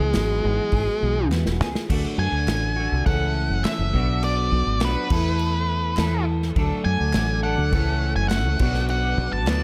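Jangly and wistful, this indie rock passage moves at 103 BPM in a straight 4/4. An up-front, dark octave-fuzz lead guitar carries the melody over a raw, overdriven garage guitar riff and a bright, twangy twelve-string electric tucked in the background. A foam-muted fingered bass sits forward, an airy small-room drum kit played with bundle sticks drops a fill at 1.3 seconds, and very quiet, crisp group handclaps add texture. A sweeping, detuned sawtooth pad with a slow attack enters in the background at 6.6 seconds, as the chords move from Eadd9 through D, A/C#, Bm and Esus4 in a fairly dry mix cut from a longer piece.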